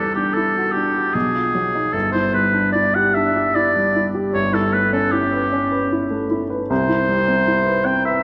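Luminous and dreamy, this brief impressionist classical excerpt in G major moves at 76 BPM in a rubato 3/4, with a distant, roomy oboe singing the melody from G4 to G5 up front while a present baby grand piano accompanies from G1 to B4 through Em9, B, G5, A9/G and Cmaj7, both parts sounding for the full 8.2 seconds and bathed in a wet concert hall reverb that lingers 2.6 seconds.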